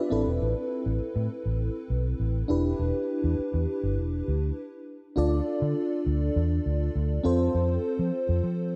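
Dramatic and moody, this short excerpt of 1980s-style pop moves at 101 BPM in a straight 4/4. An FM electric piano layered with a soft pad carries the accompaniment, its detuned, full-bodied tone treated with chorus and tremolo and sitting up front with a fast attack that decays into a dreamy haze. Beneath it, a vintage muted fingered electric bass gives a round, punchy, foam-muted low end that feels dark and amped. The harmony moves from Amadd9 to Em7, then after a brief stop between 4.6 and 5.2 seconds it shifts to a new section on Dm and F. A lush hall reverb with a long 2.7-second tail soaks the whole mix, lending it a dreamy atmosphere.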